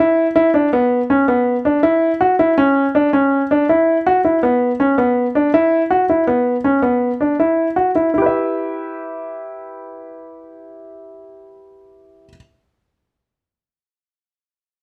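Progressive instrumental in E dorian at a driving, tense 162 BPM in 5/4, this short cut from a longer piece features a solo grand piano, clear, intimate and up front with audible action noise and light reverb, moving from E5 through C#m and Bsus4 before settling onto Em at 8.1 seconds as a new section begins.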